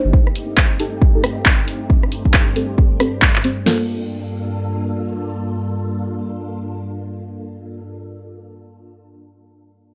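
A dry, gritty hardware recording with a digital ambience frames this bouncy, late-night two-step garage excerpt. Its swung groove comes from a punchy, up-front electronic drum kit of layered kick, snare and crash, topped by handclaps, hi-hat and rim clicks. Deep, full-bodied chord stabs carry a filter sweep, chorus and tape echo above silky vintage string-machine chords that pulse with phaser, ensemble chorus and sidechain pumping. The drums drop out by 3.8 seconds, leaving the stabs and strings to settle onto a Gm9 chord and ring on until about 8 seconds.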